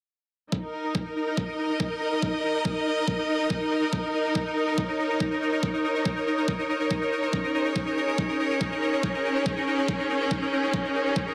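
Psychedelic trance in a hypnotic, straight 4/4 groove, cut from a longer piece, where a knocking, layered electronic kick re-recorded in a small room sits up front beside a smooth, vibrato-rich bowed string ensemble pumping to the sidechain, while a bright, detuned triangle texture of pulsing gated chords with chorus and its own reverb sustains from 0.8 seconds, all set in a moderate digital room and a dense, heavily limited master.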